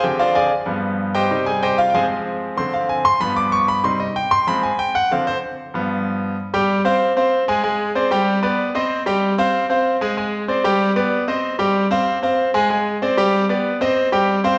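A bright, up-front concert grand piano plays alone in this fiery, driving Latin excerpt, its deep bass and polished top ringing through a wet recital-hall reverb as it cycles through Dm7b5, G7, Cm and Fm until 6.4 s, then moves into a new section built on Fm, Abmaj7#11, G and Cm that runs to 14.6 s.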